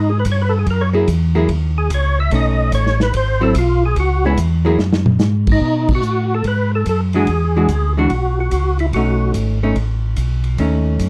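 Bluesy and soulful, this soul jazz organ trio excerpt swings at 145 BPM in B mixolydian, with a percussive tonewheel organ carrying the melody through chorus vibrato and slow rotary speaker until 9.3 seconds, a mellow, round organ bass with key click underneath, a hollow-body archtop guitar comping clean and picked from 0.9 seconds, and a small-room drum kit with a punchy kick adding a fill at 4.8 seconds before a band accent at 5.8 seconds, all in a dark production with light reverb.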